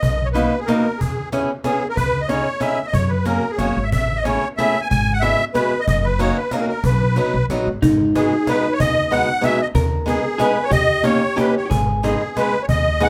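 Musette waltz in 3/4 at 186 BPM, whirling and nostalgic, played with a rubato feel in this short cut from a longer piece. The reedy, shimmering musette accordion sits up front with the melody, its wet musette tuning giving the line a wavering glow. Beneath it, a woody, thumpy upright bass with gut strings is plucked pizzicato, and a snappy cajon with snares, struck with hard hands, sounds distant in a large room. From 0.3 s a bright, boxy acoustic guitar adds picked swing-style accompaniment, also up front. When the harmony turns from B major to G# minor at 7.8 s, a clean, compressed, dark-toned hollow-body electric jazz guitar enters with a picked second line. A moderate studio reverb rounds out the ensemble.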